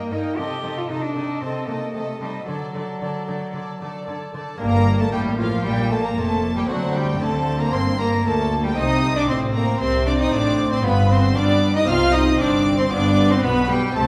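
A rich, nasal solo cello leads up front in this stormy, dramatic baroque-style concerto movement in G minor at 115 BPM in 4/4, its gut-string melody ranging from F3 to G4 against a period-style string band: violins carry a high melody and a second line, while a dark viola section, a delicate fingerpicked lute with double gut strings, and the cello section's smooth-topped bass sit in the background. The double bass section enters at 4.6 s with the turn to G minor, adding a reedy low foundation as the harmony moves through D7b13, C minor and G7. Heard from further back in a recital hall with a 1.5-second reverb, this short excerpt is cut from a longer piece.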